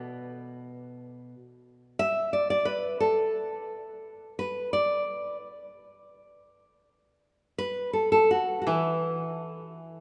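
A woody, dry koto played with fingerpicks opens this austere, calm excerpt of Japanese traditional chamber music in low accompaniment, then falls away before a full-bodied, fingerpicked nylon-string guitar enters at 2.0 seconds with an up-front, deep classical melody, finger squeak and all, in E suspended pentatonic. The tempo is a rubato 79-91 BPM in 4/4, set in a wet church reverb, and the koto returns at 8.7 seconds beneath the guitar.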